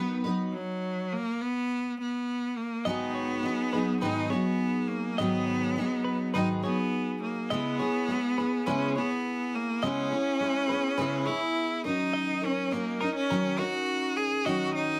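A steady, straight four-beat pulse underpins this tender, reflective acoustic pop passage, cut from a longer piece. A full-bodied, double-tracked steel-string acoustic guitar, picked up front, carries the accompaniment, while a bright, focused cello, bowed close by a single player with vibrato, sings the melody. After a brief stop from 0.5 to 2.9 seconds, a clean electric guitar enters in the background with compressed, picked arpeggios treated with tape echo. The harmony moves from B into G#m7, then C#m7 and D#m7, giving the second section a gently searching quality. A moderate small-room ambience wraps the parts in an intimate, warm space.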